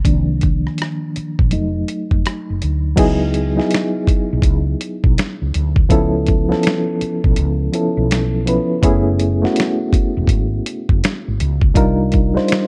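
Soulful and late-night, this neo-soul R&B piece at 82 BPM in 4/4 swings its sixteenths beneath a mellow, reedy electric piano with fast tremolo through built-in speakers, featured up front in its opening 3.0 seconds, alongside a gritty, compressed sampler-style drum kit with a thumpy kick, medium-tuned snare, rim click, hi-hat and crash, and a round, hollow-body fretless bass with subtle chorus, as chords such as Cm11, C#m11 and F#m11 drift through a dark digital ambience.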